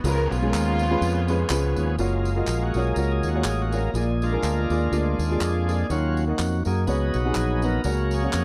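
Uptempo gospel at 123 BPM in F# major, soulful and hopeful, with a swung 4/4 groove carried by a growly, punchy electric bass up front, a boxy grand piano, and close, dry tambourine and group handclaps. A rich, earthy chamber string section with tape echo carries the melody only until 1.8 seconds, and from 2.0 seconds a shouting, lightly overdriven tonewheel organ with key click and slow rotary speaker takes a solo over very quiet, mellow French horns holding chords. The dark production sits in a small room with light reverb, moving from C#7 through F#maj7, A#7, D#m7 and C#9sus4 to a closing F#/C#.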